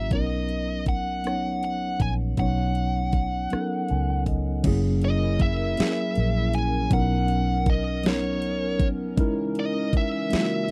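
Slow, sultry late-night R&B in six-eight at 53 BPM, this short excerpt from a longer piece opens on a mellow tine electric piano, a dark, foam-muted fingered bass and an up-front drum kit with a knocking kick, deep snare, metallic hi-hats, rim clicks and crash, while a bluesy overdriven lead guitar sings the melody over Bmaj9. The electric piano plays a fill from 3.5 to 4.6 seconds, leading into a passage through F#7, Bmaj9 and C#m69 where a hollow, flute-like pad with chorus enters at 4.7 seconds, soft and in the background. The sound is dry and close, like a 1970s studio recording.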